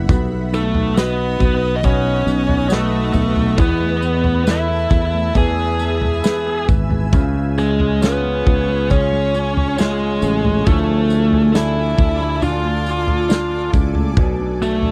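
Hopeful and emotional, this 68 BPM pop ballad excerpt pairs a dark, distorted, bluesy lead guitar melody entering at 0.5 seconds with a growly, up-front fretless bass and a punchy, loose indie drum kit, while a clear concert grand piano, a very quiet fingerpicked nylon-string guitar, a shimmering, ethereal pad with chorus and its own reverb, and a jingly background tambourine fill out chords moving from B through Esus4, E, C# and Dmadd9 to Bmadd9, all in a dry, close 1970s-style studio sound.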